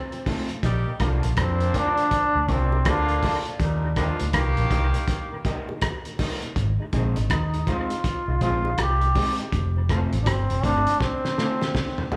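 Uplifting and laid-back, this roots reggae passage moves at 81 BPM in Bb major with a swung sixteenth feel, its chords shifting from F to Bb, Ab and back to F, all captured as a live club performance heard through the venue's PA. A bright, vibrato-laden solo trombone carries the melody up front with tape echo, joined by a mellow horn section until 5.4 s. A round, punchy muted bass and a muffled, gritty cloth-damped drum kit with a fat snare and dub echo anchor the groove, the kit closing with a fill from 11.0 s. A dark, slightly broken-up electric guitar with tape and slapback echo sits in the background, alongside a very quiet tonewheel organ turning through a slow rotary speaker and very quiet, soft-handed, high-tuned bongos.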